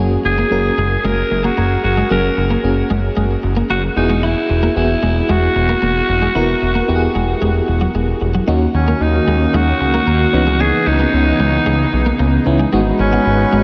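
A fat, thick analog bass sits up front with a tremolo-laced FM electric piano and a bright, twangy twelve-string electric guitar riff bathed in chorus and delay, before a breathy, raspy alto saxophone takes the melody at 0.3 seconds with light vibrato and scooped notes, and a smooth, detuned analog pad with chorus enters in the background at 8.5 seconds, all drenched in a huge ambient reverb that gives this uplifting, nostalgic pop fragment a dreamy glow.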